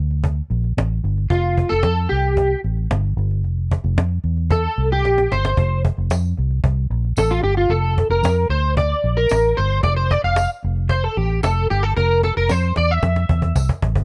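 Hazy and sunny, this indie and bedroom pop passage moves at 113 BPM in F major, with a round, foam-muted vintage electric bass and a woody, close cajon struck with hard hands sitting up front from the start. At 1.3 seconds a slightly broken-up, twangy electric guitar enters with ensemble chorus, warbly pitch drift and plate reverb, while a clean electric guitar solo runs throughout and a bright, jingly tambourine joins faintly at 6.1 seconds. Chords drift through Bbmaj7, Fadd9 and C7/F in a dark, warm production with light reverb, and cajon fills at 5.0 seconds and again at 12.0 seconds carry this fragment of a longer piece to its end.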